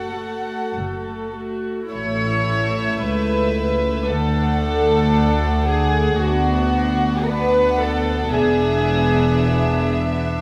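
A moderate scoring-stage reverb, about 1.7 s long, surrounds this short cut from a slow, romantic classical movement for string orchestra, elegiac and yearning in mood, moving at 56 BPM in 4/4 with a rubato feel in A major, tuned to A4 = 445 Hz. The first violins carry the melody between E5 and F#5 with a rich, intimate tone, light vibrato and soft sul tasto bowing, while the second violins sit up front with a pure, floating second line that stops at 9.9 s. Violas fill in the accompaniment with a close, sul tasto sound, the cellos lie in the background with a smooth, warm bass, and the double basses add a low, close foundation with their own light vibrato. The harmony opens on F#m before turning to A at 1.9 s, then passes through D and Bm/D to an E7 at 8.3 s. The music breaks off at 10.4 s.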